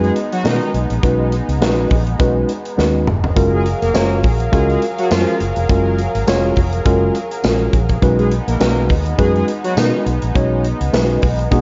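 A small room ambience frames this smooth, feel-good excerpt of early-eighties boogie funk, its sound rolled off at the top and tuned slightly below standard pitch, with a swung sixteenth-note feel in 4/4. Up front, a punchy studio drum kit with a medium-tuned snare, gated reverb and a short fill sits beside a dark, round, foam-muted fingered bass. A worn, slightly out-of-tune tine electric piano comps cleanly over a lush, thick, nasal unison pad whose detuned sawtooth chords bloom softly and linger under chorus. Bold, fat analog synth brass carries a second line with a wave-folded, ring-modulated bite and a filter sweep until 10.0 seconds. A jingly vintage tambourine joins far in the background at 3.9 seconds. The chords move from F#maj9 back to B69 at 8.0 seconds, and the electric piano closes with a short fill at 10.9 seconds.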